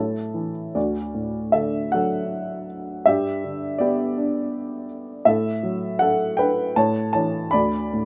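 Peaceful and calm, this short excerpt from a longer classical piece presents a lyrical solo piano in D major, moving in 3/4 at a rubato pace that drifts between 72 and 83 BPM. An upright piano carries everything alone from 0.0 to 8.1 seconds, its tone woody and present with a short sustain, sitting up front in the sound. Its range spans from D2 up to B5, giving the brief passage both a grounded low end and a clear upper register. The harmony opens on A before settling onto D, then moves through G and a lush Gmaj13/A at 5.3 seconds, returning to A and closing on an open D5. Light reverb adds a gentle sense of space around the intimate, unhurried playing.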